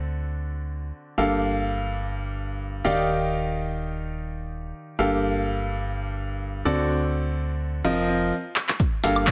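Set in a light reverb, this energetic, soulful piano house excerpt puts an up-front, clear, boxy grand piano riff with short sustain, sidechain pumping and digital delay over a hollow, dark, organ-like FM bass that also pumps through D7, Gm9, Ebmaj9 and F7sus4 changes, until a drum fill at 8.6 s brings in tape-warm analog drum machine handclaps, hi-hat and woodblock, joined at 8.8 s by a punchy electronic kick drum.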